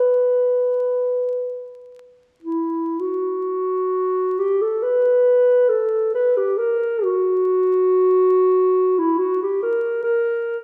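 This classical fragment moves in a free, rubato 4/4, with the pulse drifting somewhere between 41 and 75 BPM, giving it an unhurried, breathing quality. A single clarinet carries the whole piece alone from start to finish, its dark, distant tone sitting up front while still sounding roomy. The line stays within a narrow span from E4 to B4, lending the mournful, meditative mood a restrained, inward character. A wet recital-hall reverb of about 1.5 seconds surrounds the instrument, suggesting a church or concert hall, and a vinyl crackle adds an aged patina. Cut from a longer work, the passage presents one idea and then restates it at 3.0 seconds, running to 10.6 seconds.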